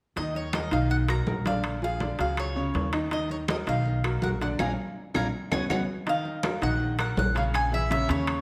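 Ringing, hard-hand congas and metal-shell timbales drive a straight 4/4 salsa groove, with woody claves joining in the background at 0.5 s, giving this passionate excerpt of a longer piece its urgent push. Up front, a round, double-string mandolin picks the melody over a brilliant, vintage upright piano and a growly pizzicato upright bass with steel strings, moving through minor chords and suspended dominants. The whole band hits an accent from 4.6 to 6.1 s before a new section opens, and a large studio reverb gives the parts a roomy depth.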